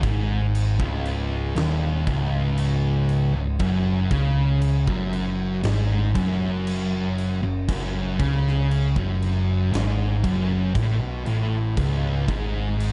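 Heavy and brooding, this 12.9-second stoner and doom metal fragment sets two thick, fuzz-distorted picked electric guitars, one pushed up front, on a riff that moves from C#5 to F#5 and back, over a round, punchy overdriven bass and a big, natural-sounding acoustic rock kit with a tight kick, a medium-tuned snare and bright crash cymbals, the production dark and touched with light reverb.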